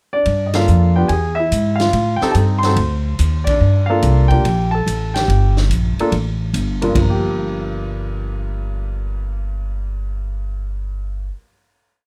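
A cool, swinging jazz piano trio piece in G minor at 144 BPM, tuned to A4 = 436 Hz, where a polished, present grand piano with plate reverb opens with a brief pickup and plays motif-based song phrases, partly doubled in octaves, over syncopated comping in rootless voicings, while an up-front, woody upright bass walks pizzicato beneath and a distant, roomy drum kit with a boomy kick and a stick-played ride cymbal pattern swings along, hitting band accents at 0.5 and 3.4 seconds before dropping out at 7.1 seconds as the piano and bass sustain the final chord.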